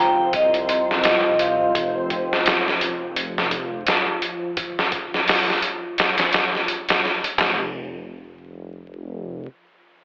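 Soaked in plate reverb with vinyl crackle and a telephone-like tone, this dark, smoky trip hop excerpt at 85 BPM opens with a brief metallic, ringing vibraphone melody struck with hard mallets and roughened by 12-bit sampler grit and tape echo, set over a reversed, swelling granular texture and a deep, moody chorused pad in the background, while a rumbling detuned saw bass with tube saturation sustains beneath and a muffled, pitched-down sampler drum kit with thumpy kick, handclaps, hi-hat, snare and toms sits up front from 0.3 to 7.6 seconds, leaving the bass to carry on until 9.5 seconds.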